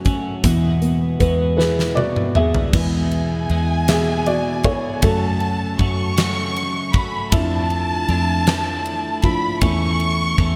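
Heartfelt and swaying, this six-eight pop ballad excerpt at 52 BPM sets a soft, intimate felt-muted upright piano with subtle chorus over twinkling arpeggios from a chiming twelve-string electric guitar with chorus and digital delay, a round, foam-muted fingered electric bass, and a huge arena drum kit with a fat snare, punchy kick and gated reverb whose fill at 1.6 seconds ushers in the felt piano solo and a lush, vibrato-rich violin section entering at 2.7 seconds, moving through Eadd9, F#m, Dmadd9/F and A/E in a bright 1980s-style digital production with light small-room reverb.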